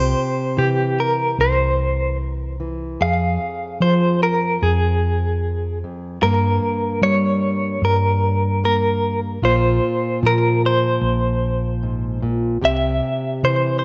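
A small room's light reverb frames this reflective, melancholic folk excerpt in F harmonic minor at 75 BPM, where a clean, compressed, direct-recorded electric guitar carries the melody up front with tremolo and slapback echo, a fingerpicked jumbo steel-string acoustic with fresh strings gives full-bodied accompaniment, and a round, dark hollow-body short-scale bass sits up front, all three playing through the full 13.8 seconds over chords moving from C through Fm, Gdim and Bbsus2 back to C.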